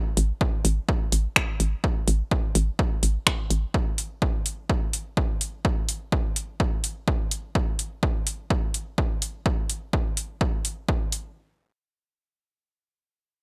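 Minimal techno with a cool, sparse mood, swung lightly on the sixteenths and cut from a longer piece. A hollow, knocking FM bass with a bouncy, fast-attack character and sidechain pumping sits up front but drops out after 3.7 seconds. That leaves a layered garage kit of finger snaps and metallic hats, along with a punchy analog kick that carries a large-room character, to run until about 11 seconds in a dry mix.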